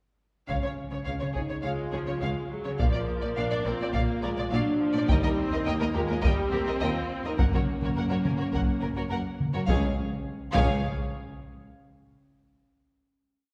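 A close taiko ensemble struck with heavy sticks drives this triumphant, heroic cinematic orchestral piece with a big drum ostinato that carries from 0.5 seconds to 11.7 seconds. Above it, the first violins sing the melody with a warm, expressive vibrato and soft attack, while a more distant second violin section adds a lush, driving ostinato. A mellow horn section holds classical-style sustained chords with light vibrato, and an intense viola counter-melody enters at 1.6 seconds. Underneath, a focused, rich cello section plays a driving bass ostinato, doubled in the background by a clear double bass section, while timpani with calf heads mark single strokes on bass notes at the opening and again at 9.7 seconds, when the theme resolves into a final chord. The whole ensemble sits in a wet scoring-stage reverb, heard from further back in the room for a grand, spacious sound.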